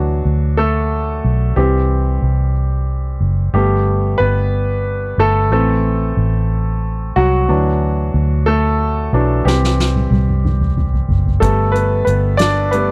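A bright, polished concert grand piano carries this swaying, romantic six-eight pop ballad in G major at 61 BPM, moving through chords such as Dadd9, C, Gadd9 and Am. A dark, round, foam-muted electric bass sits up front beneath it, and a soft-mallet drum kit with a fat snare and boomy kick enters at 9.5 seconds with a fill. The sound is dry and close, like a 1970s studio recording, and the passage is cut from a longer piece.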